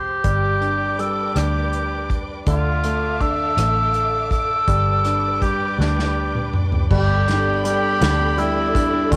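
A mellow cor anglais sings the heartfelt melody with light vibrato and plate reverb over a clear baby grand piano, lush bowed strings, a round, foam-muted electric bass with tube saturation and a small-room acoustic drum kit played with bundle sticks in this swaying 6/8 pop ballad at 54 BPM, cut from a longer piece and recorded at home on cassette, with a drum fill at 5.8 seconds leading to a new section at 6.9 seconds where a very quiet, full-bodied fingerpicked steel-string acoustic guitar adds arpeggios.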